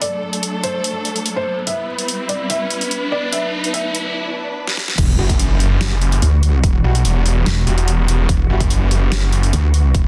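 Heavy wobble dubstep in E minor at 145 BPM with a half-time feel, menacing and aggressive: a felt-muted upright piano with audible action noise plays a soft tape-echoed melody over lush, pumping strings, overdriven drums with bright hats and a deep snare, and an electronic riser until a break at 4.2 seconds and a drum fill lead to the drop at 5.0 seconds, where a punchy overdriven kick and an up-front chorused wobble bass crash in over an Emadd9 chord, joined a moment later by a growling distorted saw bass and distant, mellow brass stabs.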